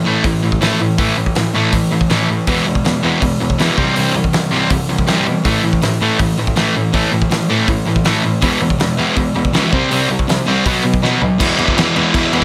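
Upbeat and rowdy, this short punk rock cut charges along in a straight 4/4, taken from a longer piece. Two overdriven electric guitars sit up front playing picked riffs from the first moment, one bright and the other sludgy and warm, driving through chords such as A5, E and C. Beneath them a rich bowed cello carries the bass line in the background, a single player adding vibrato and portamento for an expressive edge. A loose indie drum kit with a fat snare, tight kick, crash, hi-hat and toms sounds acoustic and up front in a pumping studio room. A drum fill at 11.0 seconds pushes into a brief closing section at 11.4 seconds that lands on E, all set in light reverb.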